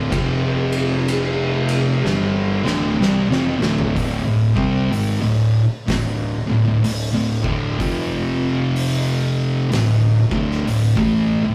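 A dark, picked fuzz guitar sits up front with a distorted riff that runs from D2 to C4, while a second thick fuzz guitar plays the riff further back in the mix. This is a brooding, ominous stretch of stoner and doom metal in D minor, crawling at 62 BPM in 4/4 with a 63% swing on the eighth notes. Beneath the guitars, a fingered electric bass adds an overdriven, growly low end in the background. An oversized, low-tuned acoustic kit brings a fat snare, punchy kick, toms, hi-hat and ride, all saturated and gritty, with a drum fill from 2.0 to 4.0 seconds. The harmony moves from F5 to Dm before settling into D5 at 4.0 seconds, returning briefly to F5 around 7.8 seconds. A moderate stone room reverb and a rough rehearsal-room sound give the kit a bright, pumping space in this fragment cut from a longer piece.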